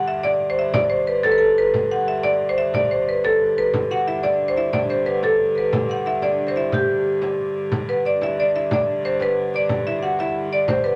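A rustic, festive medieval dance in a straight six-eight, cut from a longer piece, where a nasal, earthy hurdy-gurdy holds a low drone beneath an up-front marimba struck with hard mallets carrying the melody, a small, bright frame drum keeps time, and from 3.9 seconds a delicate, fingerpicked lute adds a second line, all set in a short studio reverb.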